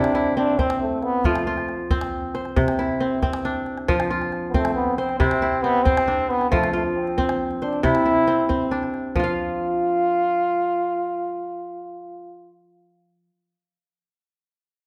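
Bathed in wet recital-hall reverb, this joyful, flowing excerpt of West African string and xylophone music in 12/8 sets the crisp, ringing fingerpicked arpeggios of an up-front kora beside a clear, classical-style trombone melody with light vibrato, over a deep, dry calabash that stops at 9.4 seconds, before the trombone ends at 12.6 seconds and the kora at 13.3 seconds.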